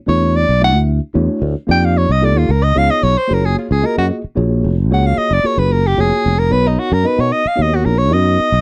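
A breathy soprano saxophone with light vibrato solos up front in a jazz style from the start, over a growly, bright fretless bass and a mellow, clean tine electric piano, giving this slick, funky 6/8 fusion fragment, cut from a longer piece, a dry, close 1970s-style studio sound.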